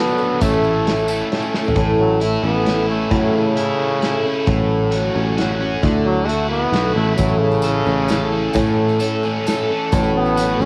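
A bright trombone carries the melody in a classical style with light vibrato, moving into a solo from 1.8 seconds, its tone colored by cassette tape and analog delay. This short cut from a longer folk rock and heartland rock piece has a nostalgic, warm mood, moving at 132 BPM in a straight 3/4 in A major, with chords shifting through A, F#m/A and Dadd9. Beneath it, a picked twelve-string acoustic guitar gives full-bodied, shimmering, octave-doubled accompaniment from fresh strings, while a double-tracked, overdriven stack guitar plays a riff, both with a cassette tape tint. A picked electric bass adds a growly, foam-muted low end, and a loose indie drum kit with a tight kick, medium-tuned snare, hi-hat and toms sounds mid-forward and rolled-off up top, marking a fill at 1.5 seconds. A jingly tambourine sits in the background, dropping out early and returning at 7.2 seconds. The home cassette recording carries light reverb and a studio ambience.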